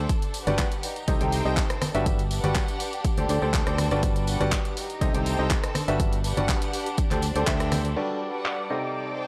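A clear, worn grand piano riff opens this euphoric, joyful piano house excerpt in G major at 122 BPM, tuned to A4 = 438 Hz. The piano sits up front with a short sustain and tape echo, alongside a warm fingered electric bass and a lush, bowed symphonic string section, each pumping with the sidechain. An instant later, an overdriven, punchy analog kick lands up front, joined by a layered house kit of crash, handclaps, hi-hat and rim click, with low-pass filters on its hats, snare, cymbals and room, while bright tambourine and soft-handed congas sit in the background. The harmony circles Gmaj7, Cm6 and D7sus4, and the band hits an accent at 7.5 seconds. At 8.0 seconds, a silky, detuned sawtooth string pad with ensemble chorus and vibrato enters on sustained chords with a slow attack, playing until the end at 9.3 seconds alongside the piano and orchestral strings. The whole has a dry, gritty hardware sound with light reverb.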